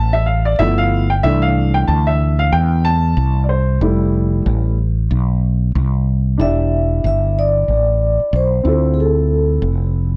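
A dark, woody upright piano and a round, direct fretless electric bass open this cool, smooth jazz-hop piece at 93 BPM, with a lazy swing on the 16ths, as the piano takes the lead over chords moving from Dm through G13 and C69 to Fmaj9. At 6.4 seconds the harmony shifts to Em7 and then Dm7, and a soft-mallet vibraphone enters with a ringing, metallic melody colored by slow motor vibrato and a boxy small-room sound, playing until 9.6 seconds. The production is dark and warm, with all three parts up front, and the clip is cut from a longer piece.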